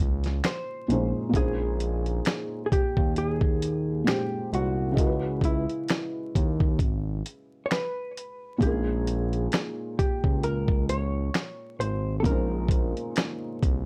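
A gritty, sampler-style soul drum kit sits up front with a thumpy kick, medium-tuned snare, hi-hat and finger snaps, entering at 0.2 seconds in this nostalgic, melancholic lo-fi hip hop excerpt with a gentle swing. Beneath it, a smooth, detuned synth bass with portamento glides between notes with tube saturation, while a felt-muted upright piano adds soft, dark accompaniment with audible action noise, filtered and tinged by cassette tape. A clean, hollow-body jazz guitar carries the low-passed melody over chords that move from Bbm11 to Dbm11 and back, all in a dry, lightly reverberant room with vinyl crackle.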